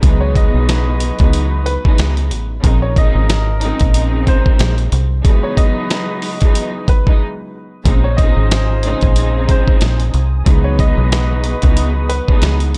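Boom-bap hip-hop at 92 BPM with a gritty, tough swing, built on a thumpy, up-front sampler-style drum kit with 12-bit grit and a round, foam-muted dub bass, while a lush bowed string section, mellow background horn stabs and a brilliant, woody upright piano carrying dub echo circle Dbm11 and Bbm11 chords, a brief break arrives at 7.2 seconds, and a detuned sawtooth pad with chorus enters at 7.9 seconds in this echo-heavy, dry cut from a longer piece.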